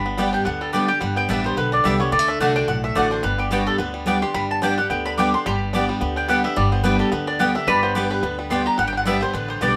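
Moderate studio reverb gives this short excerpt of joyful, driving bluegrass a lively sense of room, with swung eighth notes in four. A warm, double-strung mandolin sits up front with the melody beside a twangy banjo played with fingerpicks, while a second, brighter mandolin adds picked stabs. A full-bodied dreadnought steel-string guitar, also up front, gives picked accompaniment, and a thumpy upright bass with gut strings anchors the low end pizzicato. The harmony rests on G, shifts to D at 2.1 seconds and soon returns to G. At 5.5 seconds a metallic, nasal lap resonator guitar, played with a slide and fingerpicks, joins with a second line.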